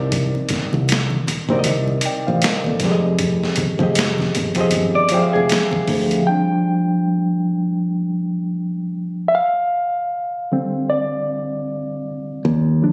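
A slow, swung 16th-note groove at 78 BPM in 4/4 carries this relaxed, sensual neo-soul and R&B fragment from a longer piece. Up front, a gritty, compressed sampler-style boom bap kit thumps its kick under a medium-tuned snare and hi-hat, joined by a bright, fingered electric bass and, in the background, low-tuned, thin-skinned congas. A reedy, barky electric piano with a fast tremolo plays the Cm9 and Fm9 chords through its built-in speakers, and at 5.0 seconds an electric guitar through a small old amp adds a brief, slightly broken-up, lo-fi second line bathed in spring reverb. From 6.3 seconds the drums, congas, bass and guitar fall away, and the electric piano takes a solo over Dmadd11/F and Dmadd11, with the bass returning at 12.4 seconds. The sound has the intimate feel of a phone recording in the room, touched with light digital ambience, studio reverb and compression.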